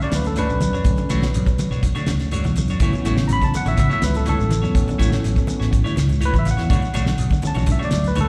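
Defiant and hypnotic, this short afrobeat cut at 123 BPM in B minor moves from Bm9 to A6 at 2.8 seconds and back, with a barky tine electric piano taking a solo through a combo amp, bathed in plate reverb and slapback echo. Beneath it, a slightly broken-up, twangy guitar plays background arpeggios through analog delay, a clean picked guitar adds stabs, and a grainy, band-limited shekere rides along, while from 0.1 seconds a round fingered bass, a dry 70s kit with a fat snare and tight kick, and very quiet, thin-skinned congas join in. The whole thing sounds like a live gig heard through the venue's PA, with light recital hall reverb.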